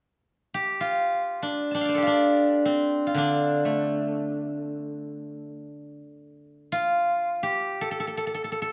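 Chinese traditional solo plucked-string music in free time and the D yu mode, this short passage from a longer piece carries a longing, elegant mood. A lone steel-string zither, played with fingerpicks, sounds from 0.5 s, ringing bright and silvery up front across a range from D3 to A5. Moderate recital hall reverb gives the instrument a sense of space.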